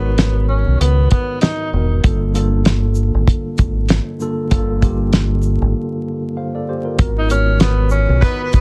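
Reflective yet tough, this boom-bap hip-hop fragment rides a swung 16th-note groove in 4/4 over minor-ninth chords that slip from G#m9 down to Gm9 and back. A dry, cloth-damped drum kit sits up front with a fat snare, tight kick, hi-hat and shaker, its rolled-off top keeping the beat dark and thuddy. Beneath it, a deep dub fingered electric bass is round, punchy and direct, while a mellow tine electric piano plays clean chords through its built-in speakers with a gentle cassette-tape colour. A breathy tenor saxophone opens the piece with whispered, subtone phrases full of vibrato, scooped notes and soft attacks, sounding distant and roomy under a digital delay, then drops out before a break at 5.8 seconds and returns at 7.2 seconds. At 8.2 seconds a tight jazz horn section punches in with a brief, clear stab, all set in light reverb within a dense, heavily limited master dusted with vinyl crackle.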